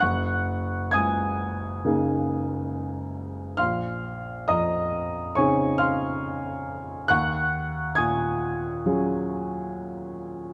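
Rubato in a slow 4/4, this brief, luminous and serene cut from a longer impressionist classical piece features a solo baby grand piano, clear, open and up front, spanning from deep bass to high treble through rich Gb69, Bbm11 and Ebm11 chords, captured by close, detailed microphones in a recital hall with moderate reverb.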